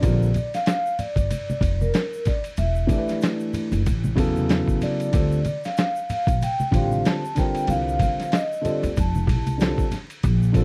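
This relaxed jazz-hop groove opens with soft-mallet vibraphone, dark baby grand piano, upright bass, a boom bap drum kit and hand percussion all sounding together, swung on the sixteenths over a dry, close 1970s-style studio sound dusted with vinyl crackle. Up front, the gritty, pitched-down drums pair a thumpy kick with a medium-tuned snare, hi-hat and ride, while the woody pizzicato bass on gut strings and the intimate, boxy piano with audible action noise move through chords from Bb to Em7, Dm7 and F69. Above them, the ringing, metallic vibraphone carries the melody with a slow motor vibrato until 9.9 seconds, and a bright egg shaker and congas played with soft hands sit quietly in the background.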